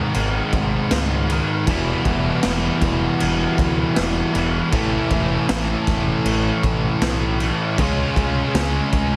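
This brief excerpt has a heavily compressed, radio-ready sound with light reverb, opening straight into a brooding, dark stretch of quiet-loud alternative rock at 79 BPM in a straight 4/4. A raw garage drum kit sits up front, its punchy kick, medium-tuned snare and dark crash cymbals caught in a small, pumping room with a gritty, saturated edge and a rolled-off top. Behind it, three bright electric guitars each carry a riff: a cranked stack guitar with overdrive, a double-tracked high-gain guitar with distortion, and a thick fuzz guitar, all picked and set back in the mix. A growling fingered electric bass, overdriven and heard both direct and amped, anchors the low end from 0.2 seconds. The harmony moves from G#m to Em, then A, and lands on C# near 7.8 seconds, giving the short passage a heavy, unsettled weight.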